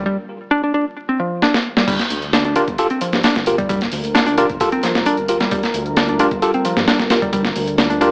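Breakbeat excerpt with a funky, energetic drive, opening on a picked electric bass riff with digital delay over a dark, rumbling detuned saw bass before a gritty, compressed sampler-style drum kit enters with a fill at 1.4 seconds. A faint analog hi-hat joins in the background, a worn, slightly out-of-tune tine electric piano adds lightly overdriven stabs with delay from 2.6 seconds, and a deep, moody ambient pad with chorus and sidechain pumping settles behind from 3.8 seconds. The sound carries light reverb, vinyl crackle and an AM radio tint, moving from a G7(no3) chord to Gm7 at 1.9 seconds.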